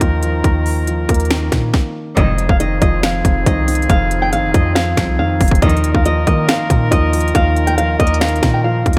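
This melancholic, menacing trap excerpt opens on a felt-muted upright piano, soft and dark with audible action noise under a low-pass filter. Alongside it, clear, close-miked woodwinds hold sustained chords with light vibrato, over a deep, boomy 808-style bass and an up-front electronic drum kit of hard-clipped kick, sharp snare, crisp hats and finger snaps. At 139 BPM in a half-time 4/4 feel in F minor, the harmony moves from Ebsus2 to Fm7 and back. After a stop from 1.7 to 2.2 seconds, a fingerpicked flamenco guitar carries a filtered melody to the end, while a chamber string section adds soft, bowed sul tasto stabs in the background at 2.2 and 5.6 seconds. The bass has a sine body with a noise layer, a fast attack and a decaying tail, and light reverb places the parts in a modest space.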